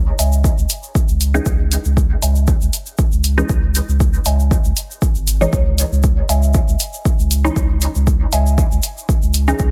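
Opening on a muted, phased dub chord stab trailing dub echo and a round, soft sub bass that pump together, this hypnotic, hazy dub techno excerpt soon adds a warbling, lo-fi pluck riff with chorus, an overdriven electronic hi-hat, a grainy egg shaker and, from 0.4 seconds, a deep, up-front overdriven kick, all held on a single C#madd9 chord in a dry, close sound.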